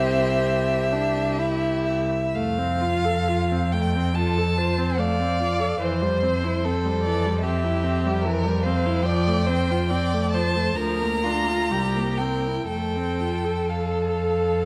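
A moderate recital-hall reverb surrounds this tender classical excerpt, a rubato romantic movement for string quartet in which one violin sings a focused, smooth-topped melody with vibrato up front, a second violin adds a rich, expressive line with portamento from a distance, a close viola gives soft-attacked accompaniment with vibrato and portamento, and a clear, even cello holds the bass, arriving at F at 12.7 seconds after a C7 chord.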